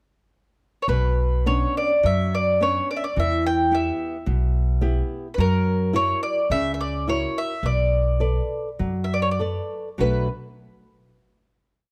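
Dry, close and detailed, this short, passionate and mournful fado-style ballad unfolds with a rubato feel, opening on a brief mandolin pickup at 0.8 seconds. The mellow, picked mandolin carries a song-like motif melody on double strings, while the warm, fingerpicked flamenco guitar supplies oompah bass notes and chord figures and the thumpy gut-string upright bass plays a pizzicato two-feel of roots and fifths. All three parts sit up front through a minor-key progression that moves from a Bmadd9 to a closing Bm7, with the piece ending on a final chord at 10.0 seconds.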